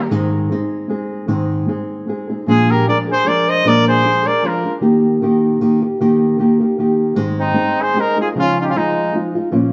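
A lightly swung 3/4 at 153 BPM drives this festive, proud mariachi excerpt in Eb major, where a dark, thumb-plucked nylon-string guitar with fresh strings sits up front throughout while a clear, classical-style trumpet carries the melody and a mellow flugelhorn adds a second line, the two horns sounding distant and roomy in a moderate recital hall reverb as they reappear at 2.5 and 7.4 seconds over chords moving from Ab through Bb7 and Eb to a closing Dbadd9.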